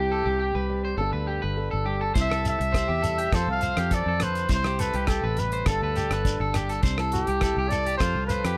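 A mellow, jazz-style trumpet carries the melody up front, with light vibrato and scooped notes, in this joyful, danceable highlife guitar-band excerpt built on a straight 4/4 cycle of C, Gadd9 and F. Beneath it, a round, foam-muted fingered electric bass sits up front, a twangy, slightly broken-up electric guitar picks arpeggios through slapback echo, and a dark, woody, boxy old ladder-braced acoustic guitar is fingerpicked quietly in the background. At 2.2 seconds a dry, damped 70s drum kit with a tight kick, hi-hat and rim click enters together with a grainy shekere, all under a light reverb.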